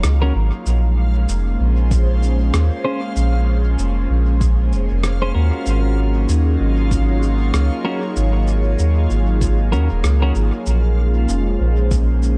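Ambient dub with a hazy, deep mood, this short section from a longer piece moves at an unhurried pace with a gentle swing on the sixteenths, drifting between Ab9sus4 and Bbm9 chords. A round, soft sub bass sits up front throughout, while an airy, breathy pad holds sustained chords with a slow attack, colored by chorus and phaser. A reversed, granular texture glimmers high above, bright and dreamy in its own built-in reverb. Clean, picked electric guitar stabs appear from 0.2 to 10.3 seconds, treated with spring reverb and dub echo. A muffled, pitched-down rim click and shaker, overdriven and sent through dub echo, ticks quietly underneath, joined at 1.9 seconds by a deep, tape-warm electronic kick set back in the background. The production is dark and fairly dry overall, with a faint mains hum in the background.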